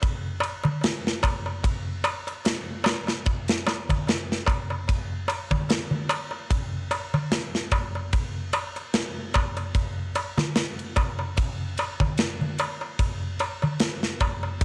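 Cinematic and smoky, this trip hop excerpt moves at 74 BPM in 4/4 with a gentle 16th-note swing, carried entirely by percussion from 0.0 to 14.6 s. A tight metal drum kit sits up front with its airy, polished sound, bright ride cymbal, medium-tuned snare and tight kick, all colored by cassette tape. Beside it, a small, crisp, high-pitched metal-shelled darbuka adds close, acoustic detail, the whole home recording wrapped in light reverb and a small room ambience.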